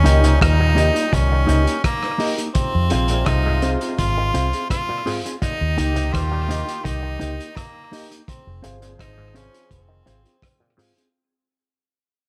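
A laid-back, uplifting roots reggae groove at 84 BPM in straight 4/4, cut from a longer piece and fading out across its 11.1 seconds, rides on a muffled, tight-kicked vintage drum kit with hi-hat and rim click and a round, punchy foam-muted bass up front, while a compressed, clean electric guitar, a very quiet, stringy muted clav through a combo amp, and a woody, slightly detuned upright piano with audible action noise sitting in the background support an edgy tenor saxophone lead with light vibrato and a clear trombone section, the horns and guitar carrying tape echo over Eb and Fm chords in light reverb.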